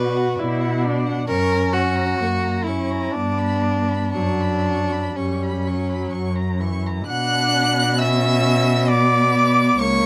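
In a rubato three-four sway, this melancholic, elegiac slow movement for string quartet, drawn from a longer work, sets a smooth, warm first-violin melody with vibrato, heard from a distance, above an even second-violin line that sits up front with light vibrato, while a rich, expressive viola, also distant, colors its accompaniment with vibrato and portamento, and the cello, close at hand with soft attacks, vibrato and gliding portamento, carries the bass, the quartet caught by close, detailed microphones in light reverb.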